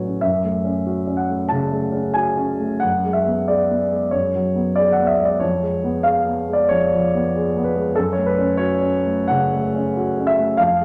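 Passionate and bittersweet, this romantic character piece for solo piano unfolds in F# minor at 93 BPM in 4/4, with uneven beats and free rubato giving it a breathing, expressive pulse. A warm concert grand sits up front with a deep bass, spanning A1 to A5 and moving from F#m through G#m7b5/F# and C#7/E# before settling back on F#m at 7.9 seconds. The piano is bathed in a wet, large studio reverb, and the 10.8-second passage is cut from a longer piece.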